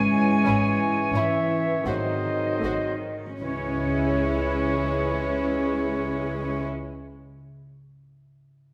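Elegiac and solemn, this brief classical passage in C# minor moves in a slow, rubato 3/4 at roughly 37-47 BPM, slowing through its first 3.4 seconds as the harmony passes from C#m/G# to G#7 and settles on C#m. A bright oboe and an airy small flute group carry second lines over a dark bassoon, mellow French horn chords, ringing harp arpeggios, a smooth sul tasto cello section on the bass and barely audible close, dry timpani. A woody viola section enters at 0.4 s, and from 0.5 s floating violin sections play the soft-edged melody and a second line, joined by a double bass section, all set in a wet recital hall reverb.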